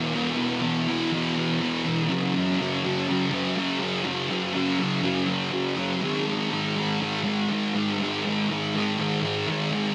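A hazy, dreamy rock piece at 122 BPM in a straight 4/4, heard here as a short excerpt cut from a longer work. A thick fuzz guitar plays alone for the full 9.9 seconds, electric and picked, double-tracked and placed up front. Its distorted tone is colored by lush chorus and delay, ranging from E2 to B3. The chords move from E5 to F#5 at 2.1 seconds and G#5 at 6.0 seconds. A huge ambient reverb with a 4.5-second decay soaks the mix, giving the whole passage a wet, drifting atmosphere.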